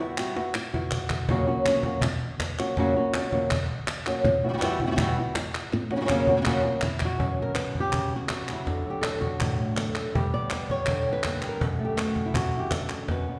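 Heard in a reverberant recital hall, this short cut from a longer flamenco piece moves at 163 BPM in 4/4 with a dramatic, mournful mood. An up-front, fingerpicked flamenco guitar carries the melody over Esus2 and F# harmony, joined by crisp, close palmas hand claps and a woody cajon struck with hard hands and faint snares, which opens with a fill. A second cajon fill leads into a new passage at 7.2 s, where the chords move through F#sus4, D and G.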